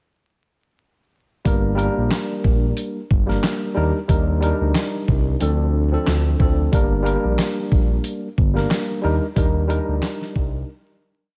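Gritty and dark, this short boom-bap hip-hop piece rides a light swing over a single verse that moves from Gm through Ebmaj7 and Dm7, with a sampler-style drum kit of thumpy kick, a medium-tuned snare layered with handclaps, and quarter-note hi-hats playing a sparse, compressed beat with 12-bit grit. A smooth, mellow synth bass holds a deep looped line with vibrato, while a worn, slightly out-of-tune tine electric piano repeats chopped chords like a sampled loop, lightly overdriven and filtered through tape. Vinyl crackle sits over a dry sound, and the track fades out from 9.4 seconds, closing on a brief break at 10.7 seconds.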